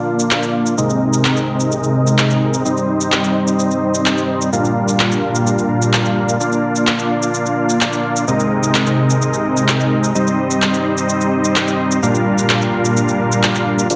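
Anthemic and euphoric, this festival progressive house cut in C minor drives at 128 BPM in a straight 4/4, taken from a longer piece. A huge, thick supersaw carries the riff from the start, its detuned sawtooth unison stacked with a sub octave and shaded by a low-pass filter and digital delay, sitting up front with a fast attack, sustained notes and a touch of vibrato. The riff reaches up to F5 over a looping progression of Bb, Abadd9/C, Cm and Gm7/Bb. A layered, produced big-room drum kit arrives at 0.2 seconds, also up front, with handclaps, hi-hat and shaker set in a small room ambience. At 13.9 seconds a menacing, beating detuned saw bass slips in underneath on a low Bb, high-pass filtered and kept in the background. A moderate digital room reverb wraps the whole mix.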